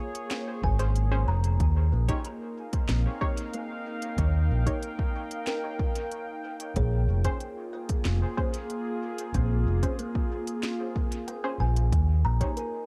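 Ambient dub at 93 BPM in Bb dorian, spacious and hazy, built on a warbling, detuned tape-like pad sustaining chords that move between Bbm9 and Eb7, with a woody, ringing kalimba tracing arpeggios through dub echo. An overdriven, punchy fingered electric bass sits up front with tube saturation, entering at 0.6 seconds together with a deep, overdriven electronic kick, while an organic electronic kit adds a woody snare and crisp hats. Muted, filtered chord stabs with chorus and dub echo flicker through an echo-heavy mix that carries little reverb, and the clip is cut from a longer piece.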